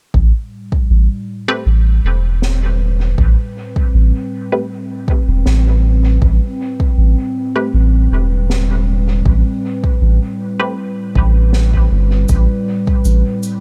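A round, soft sub bass and an overdriven, up-front electronic kick open this hazy, deep ambient dub excerpt, and moments later a warbling, nostalgic pad with a lo-fi, detuned character settles in with sustained, chorus-laden chords. From 1.5 s a muted, resonant filtered chord stab plucks through phaser, cassette tape coloring and dub echo, and at 2.4 s a quiet acoustic snare and cabasa arrive with a natural hall sound trailing into dub echo. A dark studio reverb surrounds the piece.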